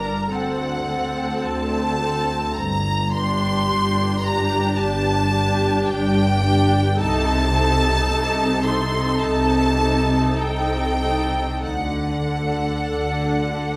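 Yearning and elegiac, this slow romantic movement for string orchestra unfolds in 4/4 with a freely breathing rubato, cut from a longer piece. A close, rich violin section carries the melody high in its register, its bowed tone smooth and even with vibrato, while a clear second violin line sits distant in the background in the same range. Up front, a lush viola section fills in the accompaniment, and cellos and double basses anchor the bass with a deep, bowed, vibrato-laden sound. All five sections play throughout the 13.8 seconds, moving through harmonies that begin on D7 and close on D. Close, detailed microphones capture the strings within a moderate scoring-stage reverb that lends the ensemble a sense of space.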